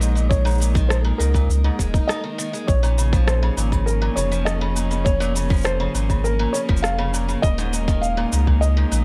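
Wistful and delicate, this short folktronica fragment in Bb minor moves at 101 BPM as a soft, felt-muted upright piano carries the melody through digital delay and plate reverb, with audible action noise, over the woody, vibrato-touched sustained chords of a dark string quartet, boxy archtop guitar arpeggios, a round, up-front sine sub bass with tube saturation, a tape-warm electronic shaker and rim click, and a tight electronic kick that enters at 0.3 seconds, all moving through Ebsus4 and Bbm under light reverb.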